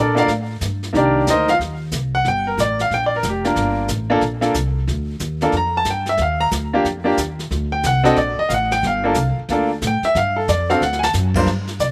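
A clear baby grand piano and a plucked upright bass open this smoky, moody jazz piano trio fragment together, with a brushed drum kit joining at 0.2 seconds. The piano carries the melody as a solo from the start until 11.5 seconds, sitting up front with an intimate, natural tone, long sustain, audible action noise and a touch of slapback echo. Beneath it, the bass sounds woody and thumpy, its gut strings giving a dark, close-up weight. The drums sit lower in the mix, with brushes on the snare, dark cymbals, hi-hat and a boomy kick, also carrying a slapback echo, and they play a short fill from 10.8 to 11.1 seconds. The trio swings over a brooding progression that moves from Gm9 and Cm9 through Ebmaj7(no3) and D7 to G7sus2, landing on D, and the dry, open-air sound adds almost nothing in the way of reverb.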